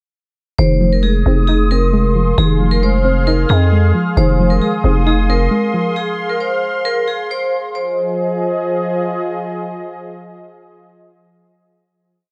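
A dark, lightly reverberant production frames this brooding, eerie trap piece in F minor at 134 BPM with a half-time feel, built on a single Fm7 chord. A metallic, ringing vibraphone struck with hard mallets loops a melody with motor vibrato. Beneath it, a soft, round chorused pluck repeats a rising and falling eighth-note arpeggio, and a detuned sawtooth pad slowly swells and sustains until 11.1 seconds. An up-front, growling, buzzy 808-style bass holds long sub-bass notes until 5.5 seconds, and the breakdown gives way at 7.8 seconds to a lingering final chord.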